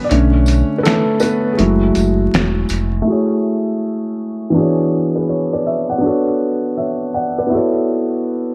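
At 81 BPM in 4/4, with a 63% swing on the 16ths, this hazy, melancholic lo-fi hip hop fragment in F# minor drifts along a dusty, sampler-style groove. The drum kit is finger snaps, hi-hat and a fat snare with the kick muted; it sounds compressed, gritty and overdriven, as if re-recorded in a small room. A jingly tambourine sits close but in the background. A deep, full sine sub bass with an octave doubling sits up front, with a fast attack and sustained notes. It drops out with the drums and tambourine by 3.0 seconds. The felt-muted upright piano carries the whole fragment: soft, mellow and intimate, with audible action noise, it moves through Bm9, F#m9 and E13 chords under a low-pass filter, while a filter sweep colours the second half from 3.1 seconds. Light reverb, vinyl crackle and an overall low-pass filter give the sound its faded haze.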